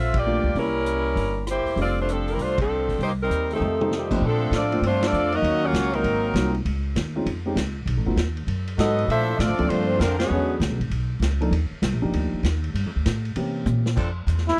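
Joyful and swinging, this short big band jazz passage, cut from a longer piece, moves in a brisk 4/4 with a swing feel. An edgy, up-front saxophone section carries the melody with vibrato, joined at 3.5 seconds by a clear, tight trombone section playing a second line with a soft attack and light vibrato. Underneath, a woody, thumpy pizzicato upright bass sits close, a baby grand piano comps with an intimate sound, short sustain and audible action noise, and a vintage drum kit with dark cymbals and a punchy kick drives the groove, with band accents and drum fills punctuating the changes. Near the close, a bright, loose saxophone section holds brief chords at 14.0 seconds before a breathy, wah-wah plunger-muted trumpet cuts in at 14.5 seconds. The dry, close studio sound has a 1970s character, with little reverb.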